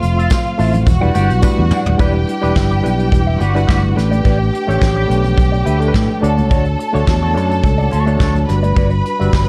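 A straight, driving disco groove in 4/4 opens this sultry excerpt, anchored by an up-front, amped fingered electric bass and a soft brush drum kit with a fat snare and tight kick in a small, natural-sounding room. A barky, reedy electric piano, lightly overdriven and pulsing with fast tremolo through its built-in speakers, carries the accompaniment beside a clean, twangy picked electric guitar shaped by an envelope filter. Above them, a lush, biting studio string section bows an intense second line with vibrato and a smooth top. Bright, high-tuned congas played with hard hands sit very quiet in the mix, while a jingly tambourine sounds in the background only until 1.9 s. A drum fill from 1.4 s leads into the longer passage at 2.0 s, where the chords move from Em7 through A9sus4 and Dmaj7 to Gmaj7, the whole excerpt set in a dark, warm production with light reverb.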